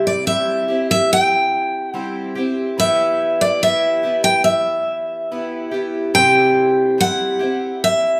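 A full-bodied, bright dreadnought steel-string guitar carries the melody up front, alongside a shimmering, octave-doubled parlour twelve-string whose picked accompaniment sits lower in the mix, with audible finger squeak. This short, pastoral and gentle folk passage moves at an unhurried 72 BPM in a straight 4/4, sitting on C, turning to Em at 2.8 seconds and back to C at 6.2 seconds. The duo plays live in one room, with a moderate large-studio reverb giving the guitars an airy space.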